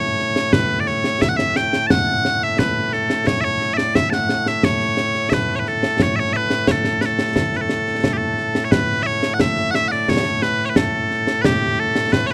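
The bagpipes, loud, bright and piercing, carry a continuous solo melody up front in A mixolydian at 88 BPM in a straight 2/4, joined at 0.2 seconds by a close, dry concert snare and bass drum with dark cymbals in this proud, stirring outdoor excerpt of Scottish pipe music, which moves into a new section at 8.7 seconds.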